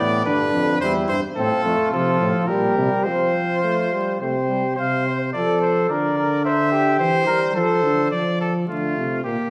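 A bright trumpet melody, a soft-edged flugelhorn second line, a clear, punchy trombone and a mellow, close-miked euphonium bass all open this lively, joyful classical canzona for brass ensemble in F major, moving at 107 BPM in 3/4, with light vibrato across the parts and the trumpet and euphonium up front; the trombone drops out at 4.6 seconds and returns at 8.1 seconds just as the flugelhorn stops, all set in a wet recital-hall reverb with vinyl crackle in this fragment of a longer piece.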